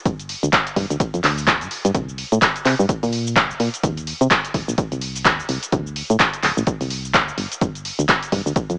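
Soulful and energetic, this short piano house excerpt moves at 127 BPM in 4/4 with a 59% swing on the 16ths, its parts running together from about 0.1 seconds to the close at 8.8 seconds. A round, dark FM bass with a fast attack and decaying notes pumps from the sidechain between D1 and C3, under a punchy analog-style electronic kick and an up-front drum machine of handclaps, hi-hat and shaker. Light reverb and digital ambience surround the groove, which has a small-speaker sound.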